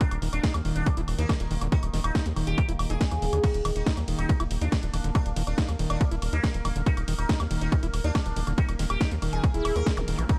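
Psychedelic trance with an intense, psychedelic mood, this short cut from a longer piece rides a straight 4/4 pulse anchored by a punchy, tape-warm electronic kick sitting up front, joined by a techno kit with a cracking snare, hats, crash, ride and woodblock heard in a large room. Beneath it, a tight sequencer bass in sawtooth and square tones drives forward with a fast-attack filter pluck, while an overdriven acid bass riff squelches and saturates further back, carrying sidechain pumping and tape echo. Over the top, a buzzing, plectrum-plucked sitar plays the melody, its sympathetic strings shimmering through a phaser, vintage 12-bit sampler grit, pumping and dub echo. In the background an overtone-sweeping drone holds sustained chords with slow attack and long release, coloured by chorus and its own reverb and carrying sidechain pumping. The production is dark and dry, and a very quiet electronic zap flickers in at 10.0 seconds just before the cut.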